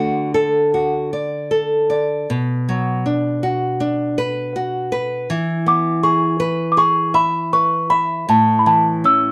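Mournful and passionate, this short cut from a longer fado-style ballad moves at 79 BPM in 4/4 with a rubato feel, tuned to A4 = 442 Hz. A fingerpicked nylon-string guitar carries the accompaniment from the start, its bright, boxy tone and fresh strings sitting up front across a range from A2 to E5. The harmony moves from D to Bm, then to E at 5.3 seconds, and settles on A near the close. At 5.7 seconds a small celesta enters with the melody, high between A5 and E6, its bell-like, sweet voice shaped by soft felt hammers and a vintage, band-limited character. The celesta also sits up front, bathed in plate reverb, while the whole performance lives in a moderate studio room.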